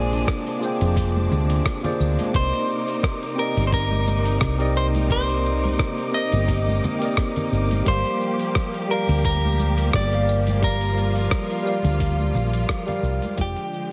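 A lightly swung 16th-note groove at 87 BPM in 4/4 sets this smooth, wistful sunset chillout excerpt in motion, with a dusty sampler-style kit of gritty, compressed hi-hat, rim click and shaker re-recorded in a large room, a soft overdriven electronic kick, and bright, close congas struck with hard hands sitting in the background from 1.2 seconds. Underneath, a dark, round hollow-body short-scale electric bass sits up front, while a clean, picked electric guitar carries the melody through digital delay. A bright tine electric piano, heard through its built-in speakers and also treated with digital delay, supplies the accompaniment. Alongside them, a lush, distant studio string section holds even, bowed chords with vibrato, and a breathy, wind-like tuned noise layer drifts in the background with a slow attack and long release. The harmony moves from Bb9 through Cm7 and Gm7 to Fm69, all wrapped in light reverb and a heavily compressed, radio-like sound, before a fade-out begins at 11.5 seconds.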